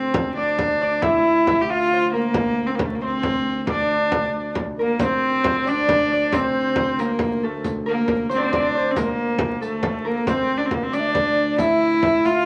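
Mysterious and ancient, this medieval dance excerpt in 6/8 sets a rich, reedy viola da gamba melody up front over a dark, biting gamba drone, a fingerpicked concert harp second line and a deep, dry frame drum, with a hollow, chiffy tenor recorder joining at 4.8 seconds and a riq's bright jingles from 5.0 seconds, all in a club reverb with vinyl crackle.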